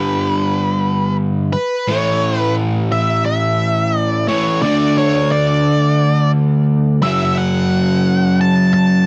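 Two electric guitars open together on this driving, sunny rock excerpt at 88 BPM in A mixolydian: an overdriven, double-tracked semi-hollow guitar picks a low, up-front riff with a warm hollow-body tone, while a dark octave-fuzz lead carries the melody above it, all captured in a dry, close 1970s-style studio sound as the chords move from G to A at 1.9 seconds and on through D5 and F#5.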